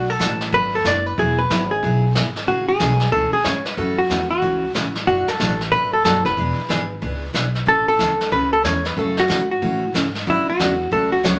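A clean, dark hollow-body electric guitar carries the melody up front in this cheerful, swinging western swing excerpt, its compressed, picked tone riding well above the band. Beneath it, a bright, full-bodied steel-string acoustic guitar picks out the accompaniment, with a touch of finger squeak audible in the strings. A woody, thumpy upright bass played pizzicato anchors the low end, while a vintage brush kit enters at 0.2 seconds with a medium-tuned snare, punchy kick and hi-hat under a rolled-off top. The tune moves at a brisk 185 BPM in 4/4 with a moderate swing feel, cycling through jazzy chords in A major such as Bm7, Amaj7 and E7 before settling toward Dmaj7. A lively studio ambience with a short reverb tail wraps the whole group in a cozy, mid-century country sound.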